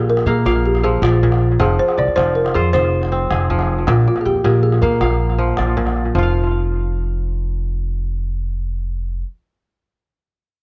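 Echo-heavy cassette tape sound with light reverb and studio ambience frames this hypnotic, flowing fragment of West African string and xylophone music in 12/8. A round, dry balafon melody played with soft rubber mallets rides over crisp, ringing fingerpicked kora arpeggios and a woody pizzicato upright bass on steel strings, both up front, while a deep, distant calabash sits back as if in a large room; the balafon stops at 5.7 seconds, and the kora rings on with the upright bass, which ends at 9.2 seconds, until 9.3 seconds.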